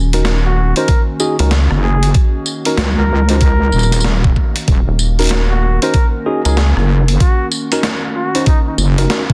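A swung sixteenth-note groove in 4/4 drives this swaggering, playful glitch hop excerpt, built on a single minor seventh chord. An overdriven electronic kick knocks up front from 0.9 seconds, layered with a gritty, pitched-down sampler-style kit of hi-hat, rim click, high-tuned snare and tambourine that sounds re-recorded in a large room. A rubbery, hollow square bass bounces low until 6.7 seconds, and from 1.7 seconds a heavy, detuned wobble bass with chorus and tube saturation joins it. Above them, a worn, slightly out-of-tune tine electric piano plays stabs that pump with the sidechain and trail tape echo, while a nostalgic, lo-fi pad warbles sustained chords in the background. A dark trumpet carries the solo melody with light vibrato and a smooth top, roughened by vintage 12-bit sampler grit and tape echo. The mix is dry, dense and heavily limited.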